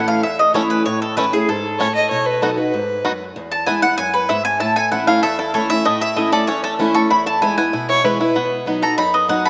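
A straight, driving 4/4 pulse carries this joyful bluegrass fragment, with an old ladder-braced acoustic guitar picking warm, boxy accompaniment, finger squeaks and all, beneath a round, double-strung mandolin that takes the solo throughout. A bright, twangy banjo played with fingerpicks enters at 0.6 seconds with a percussive melody, while a single dark, woody fiddle with light vibrato adds a bowed second line in two brief passages, the first at 1.8 seconds. The rough home demo mix sits in a lush, wet hall reverb, with guitar, mandolin and fiddle placed up front.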